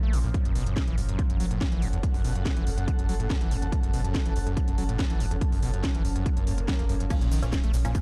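Driving, relentless peak-time techno runs in a straight 4/4 at 142 BPM, with an overdriven electronic kick arriving at 0.3 seconds and a layered drum kit of cracking snare, smooth hats, ride, crash and shaker pumping against it. Underneath, a round sine sub bass holds the low end while a squelchy, resonant acid bass riff spans from Gb1 up to Db4, its distorted sawtooth plucks ducking with the kick. A cloudy granular pad drifts high above in blurred, detuned washes, and a very quiet drone with moving overtones hums in the middle register until 7.1 seconds. The harmony sits on Gbm before shifting to Bbm at 7.1 seconds, where a muted, full-bodied dub chord stab with phaser, 12-bit grit and echo lands alongside an electronic impact that follows a faint swell. The digital ambience and dark, warm production give this short cut from a longer track its weight.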